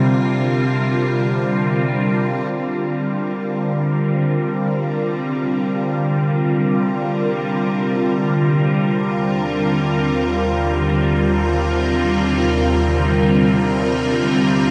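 From the start, an evolving wavetable pad sits up front, its bright, detuned unison tones morphing through ring modulation and phaser as it holds sustained chords, beginning on a C5 harmony. Beneath it sits a calm, nasal, organ-like drone in the background, spanning C3 to G3. The mood is serene and melancholic: ambient music in C minor, floating in free time inside a huge, wet reverb with an 8.7-second tail and a dark overall production. At 2.5 seconds a very quiet, velvety synth lead enters with a smooth, vibrato-tinged melody between F4 and D5, thickened by a sub octave and chorus, before falling silent at 7.0 seconds. The pad and drone carry on alone, shifting to an Ebmaj7 chord at 9.0 seconds as this fragment of a longer piece drifts on.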